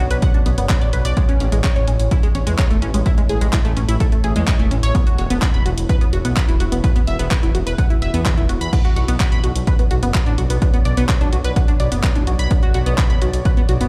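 Dramatic and melancholic, this melodic techno excerpt pairs a punchy, up-front electronic kick with a tape-warm deep house kit of crash, handclaps and hi-hat, a deep, rumbling detuned saw bass with tube saturation, tight driving sequenced synth arpeggios through chorus and digital delay, and a moody ambient pad of sustained chords set in the background, with the bass, arpeggios and pad all pumping against the kick as the chords move from Bm through Amaj7 and Esus2 back to Bm in a large, reverberant room sound.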